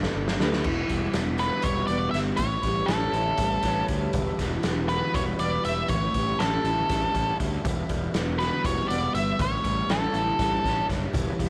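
A lightly reverberant studio sound frames this dark, trippy psychedelic rock excerpt in 7/8, which opens on a drum fill from a raw garage kit with a fat snare, a punchy kick and a gritty, up-front character. An overdriven fuzz bass, a slightly broken-up electric guitar riff through a small old amp (double-tracked and flanged), very quiet low-tuned congas and a faint chamber string section holding soft, bowed sul tasto chords carry the harmony as it alternates between Emadd9 and A7. At 1.4 seconds an octave-fuzz lead guitar takes the melody, distorted and up front with tape echo.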